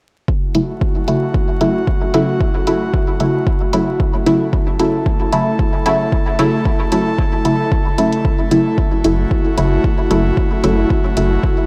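Dub techno with a nocturnal, meditative mood, this short cut from a longer piece rests on a single F#m7 chord throughout. An airy, breathy pad holds sustained chords from the start, its slow attack and long release softened by chorus and pulled into a sidechain pump. A punchy electronic kick sits up front, while a filtered dub chord stab, muted and detuned with a quick filter pluck, is treated with chorus, phaser and dub echo. A low-passed electronic hi-hat ticks quietly beneath with a slight swing. At 9.0 seconds a round analog bass enters on a deep F#, thickened by tube saturation and pumping with the kick. The whole sits in light digital ambience over a dry, gritty hardware sound flecked with vinyl crackle.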